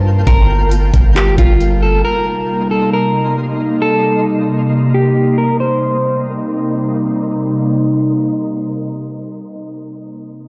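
A trap drum kit with a knocking kick, metallic hats and handclaps punches in up front from 0.3 to 1.7 s over a deep, sine-toned 808 bass that decays early, in this spacious, ethereal half-time cloud-rap excerpt at 135 BPM in C dorian. A dark, glassy FM pad with ensemble chorus, a moving notch and its own reverb holds sustained chords over Gm7 and Cm7, while a faint granular texture adds twinkling octave-up shimmer and a slightly broken-up electric guitar carries the fingered melody through tape echo until 6.9 s. The mix sounds as if played on a big sound system in a bare room, softened by a low-pass filter and large studio reverb.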